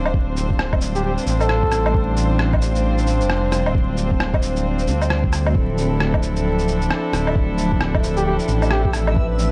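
Future garage with a nocturnal, rainy mood and a swung 4/4 groove, cut from a longer piece: a rich chamber string section holds sustained chords over a deep, rumbling detuned saw bass with tube saturation, both pumping against a muffled, pitched-down kick and overdriven woodblock, shaker and rim click carrying 12-bit sampler grit. A raspy bucket-muted trumpet slips in with short veiled phrases through analog delay around 1.0 and 8.2 seconds, while a dreamy reversed granular texture rises quietly in the background from 6.3 seconds. The harmony moves from G7sus4/D to Dm9, and the dry, gritty hardware sound is dusted with vinyl crackle and light reverb.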